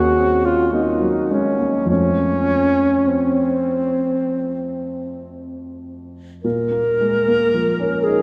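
A mellow alto saxophone sings an elegiac, melancholic melody with classical vibrato, up front over a warm, polished grand piano accompaniment in this short romantic classical duo, which moves in a rubato 4/4 at around 50-58 BPM through Ebm7, F and Bbm, all set in a wet church reverb with a 3.4-second decay.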